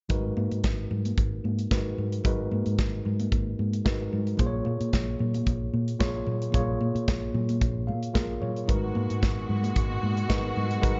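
Driving, danceable disco at 112 BPM in G# dorian, this short cut from a longer piece sets a worn, slightly out-of-tune tine electric piano, lightly overdriven through its built-in speakers with a fill at 7.6 seconds, over a round, dark hollow-body fingered bass, a punchy up-front studio drum kit of kick, medium-tuned snare and hi-hat, and soft-handed, high-tuned congas in the background, moving from G#m9 to A#m7 and back as a lush, bowed string section with vibrato enters at 8.7 seconds, all in a dark small-room production.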